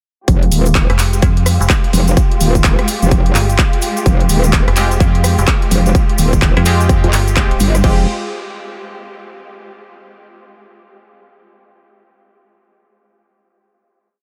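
Over a swung four-on-the-floor groove driven by a punchy, overdriven electronic kick and a programmed dance kit of hats, rim clicks, handclaps and crashes, this swaggering, gritty bass house drop pairs an aggressive, up-front metallic wobble bass with chopped phrases from a mellow, digital FM bass, while a lush, distant string section holds sustained chords beneath the sidechain pumping, a grainy cabasa ticks out hand-played sixteenths in the background, and sparse, nasal band-passed chord stabs echo in from 4.8 s before the music settles on a final chord at 7.8 s.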